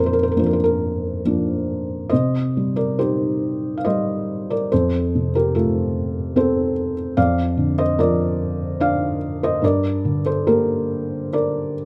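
Reflective and melancholic, this fragment of a lyrical classical solo piano piece sets a felt-muted upright piano close and up front in light reverb. Its dark, intimate tone is softened by thick felt, and the action noise is audible as it moves in a rubato, unevenly pulsed triple metre, tuned to A4 = 437 Hz. After a brief opening, a longer passage begins at 2.1 s and drifts through C minor, F, Bb over F and G minor.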